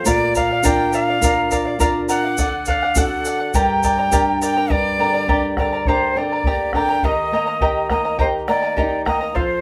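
A breathy, close-miked cane quena carries the melody up front in this earthy, festive Andean folk piece cut from a longer work, over shimmering fingerpicked charango with its doubled strings, dark fingerpicked flamenco guitar, a round bombo and a grainy egg shaker that drops out at 4.6 seconds, all played live together in a small, reverberant room.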